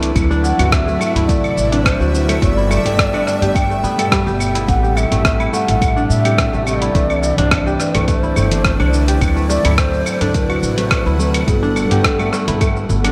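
Soaked in cathedral reverb, this dreamy, meditative organic downtempo fragment at 106 BPM with a light swing sets a breathy low ney, expressive with vibrato and a diffuse ambient delay, over crisp fingerpicked kora arpeggios, a dark, clean electric guitar that pumps with the sidechain and trails analog delay like the kora, a woody gut-string upright bass with tube saturation, a tense, detuned sawtooth drone shimmering with phaser in the background, a gritty, tape-warm sampler-style kit of cabasa, claves, hi-hat and rim click, a deep layered electronic kick, and a very quiet clay darbuka played with soft hands, the harmony circling hypnotically through D13, Gmaj9, Am7 and Cmaj9.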